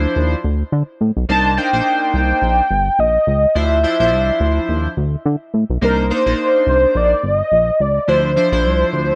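Bathed in light reverb and digital ambience, this late-night, danceable snippet of early-eighties boogie funk moves at 106 BPM with a swung 16th-note feel in C dorian, where a glossy, nasal chorused synth bass sits up front with a dark pluck beneath a full-bodied, mellow chorused polysynth swaying between Dm9 and Cm9, until a warm velvety synth lead of smooth, detuned sawtooth unison enters at 1.3 s to carry the melody.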